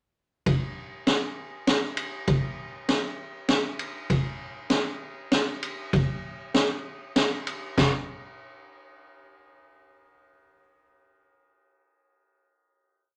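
A street-band drum kit carries this short, complete klezmer piece on its own, moving through a 3/4 groove at 98 BPM with a straight feel. The mood is festive and soulful, with crash and ride cymbals, snare and kick drum all heard from 0.5 seconds. The high-tuned snare sits against a boomy kick, and the kit's tone is warm and mid-forward with a rolled-off top. Placed up front in a small room, the drums carry a wet reverb that gives the acoustic sound a close ambience. The single groove section runs until 7.8 seconds, where a final hit closes the piece, with that closing section lasting to 9.6 seconds.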